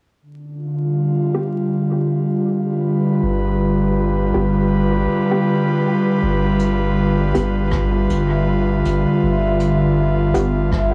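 A gently swung sixteenth-note feel in 4/4 carries this hazy, spacious ambient dub fragment: an airy, breathy pad with chorus and plate reverb sits up front, opening on a G7 chord under a filter sweep, while muted, phaser-tinged chord stabs drift in the background through tape-worn dub echo. A round, soft sub bass arrives at 3.2 s, and brushed hi-hat and rim clicks from a distant, roomy kit join at 6.6 s, followed by a very quiet overdriven electronic kick. A bubbling, resonant stepped-filter texture surfaces at 8.0 s, over a bed of home-cassette grain and vinyl crackle.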